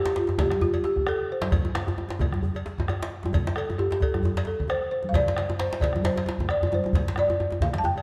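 Earthy and festive, this short excerpt cut from a longer West African traditional piece moves at 133 BPM in 4/4 with a lightly swung sixteenth-note feel. Up front, a balafon carries the melody between F4 and A5, its woody, round tone struck with soft rubber mallets and kept dry. Beneath it, a drum ensemble fills out the groove: one djembe sits forward with a medium-tuned voice in a small room, while a second, tight and cracking with metal rattles, stays further back. Bright, thin-skinned congas add a vintage, band-limited color, a deep, dark bombo rings in a live room from 0.4 seconds, and a metallic cowbell sounds close and dry in the background. A drum fill arrives at 6.4 seconds, and the whole ensemble is bathed in a wet scoring stage reverb within a dark, warm production.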